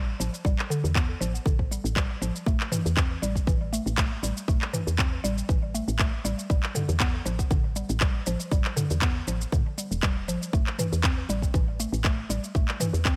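Afro house with a driving, earthy feel, cut from a longer piece, in which a mallet-like synth pluck plays mellow, percussive arpeggios colored by chorus, phaser, dub echo and sidechain pumping over a soft, round FM bass of woody tone that pumps too, while a tape-warm house drum kit of handclaps, shaker and toms enters at 0.2 s and a punchy electronic kick arrives up front at 0.4 s, the groove sitting in digital ambience as the harmony moves from A7(no3) through G5/A to A5.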